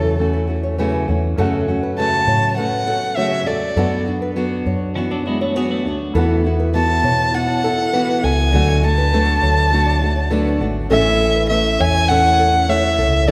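A dark, woody violin sings the melody up front over fingerpicked steel-string guitar, boxy nylon-string arpeggios in the background, a round, punchy hollow-body electric bass and, from 1.4 s, a felt-muted upright piano, with a bright, twangy twelve-string electric guitar adding a brief tremolo line at 5.0 s, in this easy-going, carefree acoustic pop excerpt at 101 BPM in A major, moving from F#m7 to A and bathed in the reverb of a concert hall.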